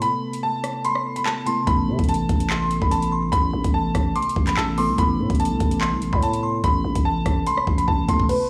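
A half-time drill groove in 4/4 drives this tense, cold hip hop excerpt, its electronic kit up front with a knocking kick, metallic hats, handclaps, rim clicks and a crash, closing with a drum fill at 7.9 seconds. A bright, woody upright piano carries the melody through a low-pass filter and digital delay over muted, felt-like synth keys with chorus, while a glassy FM synth bell sits in the background from 0.8 seconds with a warbling, crystalline line. The growling, buzzy 808-style bass arrives at 1.7 seconds after the opening break, all set on a single Amadd9 chord with vinyl crackle and a small room.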